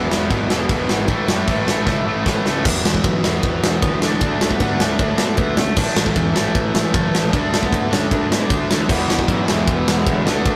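This rough rehearsal-room recording has a light reverb and a tube-saturated grit, capturing a rowdy, energetic stretch of straight-ahead punk rock cut from a longer piece. A bright, overdriven electric guitar sits up front, picking a riff from start to finish, while a second overdriven guitar also picks a riff from the background during the opening, drops out, and returns at 8.9 seconds. Underneath, a picked electric bass growls with fuzz, and a big acoustic drum kit played in a natural-sounding large room drives the song with a punchy kick, a medium-tuned snare, crashes and a ride with shimmering, brilliant cymbals. A drum fill at 1.9 seconds launches the second section, and at 2.3 seconds a dark, distorted, bluesy lead guitar enters in the background with a melody that runs to the end. The power-chord progression moves between E, D and A, keeping the energy raw and relentless.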